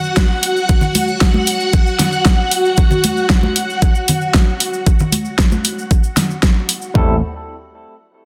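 Nu-disco with a sensual, groovy feel, this excerpt is cut from a longer piece and opens on a lush, vintage string machine holding sustained chords, its sawtooth tone thickened by a sub octave, softened by a gentle attack and colored with phaser, ensemble chorus and sidechain pumping. Close, dry cabasa and congas played with hard hands sit beside an up-front electronic pop drum kit, where a knocking kick and toms sit louder in the mix than a fat snare and warm hi-hats, all of it overdriven and re-recorded in a small room. At 6.9 seconds a barky, clean tine electric piano slips in through a combo amp with a touch of digital delay. A punchy, amped vintage slap bass lands on an A at 7.0 seconds, also pumping to the sidechain, as the harmony settles on Am7 and a new section begins. Light reverb and digital ambience frame a dense, heavily limited modern master.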